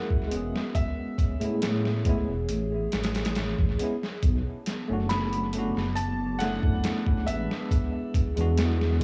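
Brooding and hypnotic, this trip hop excerpt sets a soft, felt-muted upright piano melody, its action noise audible through tape echo, against bell-like tine electric piano accompaniment treated with tremolo and echo. A muffled, pitched-down sampler-style drum kit with a thumpy kick enters at 0.1 seconds, followed at 0.3 seconds by a deep, rumbling detuned saw bass with tube saturation, both sitting up front. In the background, a dark analog pad holds slow-attack chords with chorus, moving through F#7, Amaj7, Bm7 and E7 in an echo-heavy mix with small room ambience.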